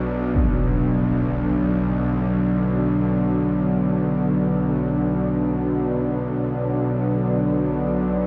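Ominous and cavernous, this dark ambient drone fragment sets an airy, detuned sweeping resonant pad with a filter swell and chorus over a tense, nasal bowed-like drone with vibrato, both sustained up front from the start, while a huge impact sounds briefly in the background at 0.3 seconds, all bathed in a vast, wet reverb with a cassette tape character.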